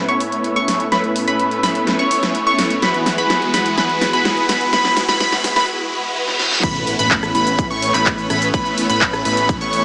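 This euphoric, anthemic festival progressive house passage at 126 BPM in A major opens on a build-up: a lush, airy unison pad holds sustained chords with chorus, a bright, catchy plucky lead spins high arpeggios through tape echo, and a detuned, compressed supersaw lead carries the riff through a phaser and a low-pass filter sweep. A big-room dance kit sits up front, with a huge snare, metallic hats, handclaps, rim clicks, shaker and crash playing a drum fill, while very quiet risers, a reverse cymbal and a sub drop enter at 2.7 seconds. The harmony moves from Aadd9 to Eadd9, and a short break with the reverse cymbal arrives at 5.7 seconds. At 6.6 seconds the drop lands on Aadd9 with an impact, bringing in a punchy, layered electronic kick and a fat, thick analog bass on a low A, with the pad, both leads and the bass pumping against the sidechain. A moderate ambient reverb surrounds the mix, thinned by a high-pass filter and a small-speaker tone, in a passage cut from a longer piece.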